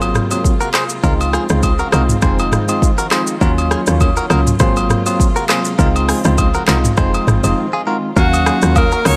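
A swung sixteenth-note groove at 101 BPM in 4/4 drives this smooth, mellow afrobeats passage in Eb dorian, cut from a longer piece. The electronic afro-pop drum kit sits up front with a deep kick, crisp hats, handclaps, rim clicks, shaker and toms, while acoustic agogo bells and woodblock add a small-room clatter. A woody, punchy log drum bass with fast-attack, decaying FM tones and a noise layer anchors the low end. A bell-like tine electric piano plays bright accompaniment over Ab13, Dbmaj7, Fm7 and Ebm9 chords, cushioned by a soft-attack, sul tasto string section bowing intimate sustained chords in the background. A twangy, scooped, direct-recorded guitar riff carries warbly pitch drift and tape echo. After a brief break at 7.6 seconds, an edgy, forceful alto saxophone takes the melody at 8.2 seconds, all within light reverb and digital ambience.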